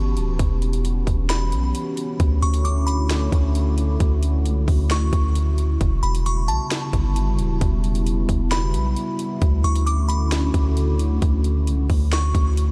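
A long, sustained 808-style bass stands out most, its deep sine tone sitting up front with a fast attack and a mellow decay under this ethereal, spacious piece of atmospheric cloud-rap, cut from a longer track. Set at 133 BPM in 4/4 with a half-time feel, the music drifts between Em69 and Dmaj9 chords. A dark analog pad holds sustained chords throughout, its moody sawtooth and triangle blend with a sub octave and slow attack, treated with chorus, phaser and sidechain pumping. The trap drum kit enters at 0.2 seconds with a hard-clipped kick, sharp snare and metallic hi-hats, electronic and tape-warm, placed up front. From 1.3 seconds a delicate, tinkling FM synth tine bell carries the melody high in the register, its bright, decaying notes given chorus and a diffuse ambient delay. Light reverb and digital ambience lend the mix an airy sense of space.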